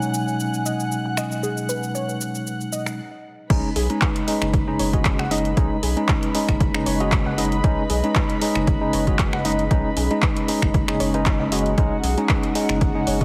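This deep house excerpt opens on a hollow, flute-like pad holding soft sustained chords, a clean tine electric piano punching out stabs through a low-pass filter and tape echo, a soft-attack violin section bowed sul tasto for floating texture, and an overdriven drum kit of hi-hat, shaker, finger snaps, handclaps and crash cymbal, all in B major at 116 BPM with a light 16th-note swing. A warbling, dusty pluck joins at 0.7 seconds with lo-fi arpeggios that sit in the background, colored by chorus, cassette grit and tape echo. A filter sweep on an analog synth pad runs through the opening, and the music stops briefly at 3.0 seconds before the drop lands at 3.5 seconds. There a punchy, layered electronic kick and a round, deep analog bass enter, with the bass, pluck, violins and electric piano all pumping under sidechain compression. The mood is soulful and warm, and the whole track sits in a light reverb with a heavily compressed, radio-like sound.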